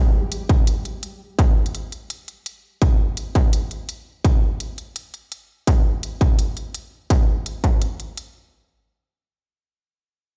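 Crisp electronic hi-hats open this cinematic, tense half-time drum and bass passage at 168 BPM in 4/4 at 0.3 s, and a distorted, up-front electronic kick joins at 0.5 s. Both drums carry a tape-warm tint and sit fairly dry, yet the recording sounds as if played through a big sound system in a bare stone room. The kick dominates while the hats stay far back in the mix, ticking on until 8.2 s.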